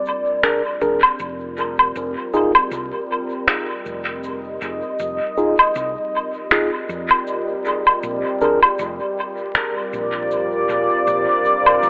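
A deep, moody ambient pad sits up front, its detuned sawtooth voices thickened with chorus and a sub octave, sustaining slow-attack chords from the very start of this meditative ambient dub excerpt at 79 BPM in 4/4, with a 16th-note swing. Close behind comes a tape-toned kit of electronic shaker, finger snaps and woodblock, re-recorded in a small room and thrown into dub echo. A mellow, clean tine electric piano drops stabs soaked in the same echo from 0.4 s until 8.6 s. A round, dark hollow-body electric bass enters at 0.8 s and holds the low end, while an overdriven electronic kick, layered and deep, stays in the background until 9.7 s. The harmony moves from Bb7 to a bare F7 and settles on Bb, all wrapped in moderate spring reverb, heavy echo, vinyl crackle and a telephone-like sound.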